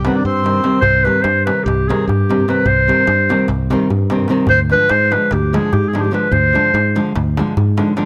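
Closely miked with light reverb, this short cut from a longer Balkan wedding-band tune races at 295 BPM in a straight 9/8 in C harmonic minor, with a virtuosic, fiery mood. A roomy, classical-style clarinet leads up front until 7.1 seconds, while a reedy, vintage accordion plays a brief second line that stops at 0.8 seconds as a drum fill passes. A woody, fingerpicked nylon-string guitar, a direct fingered electric bass and a crisp, deep metal-shell darbuka carry the accompaniment over a C minor chord that moves to D diminished at 4.5 seconds.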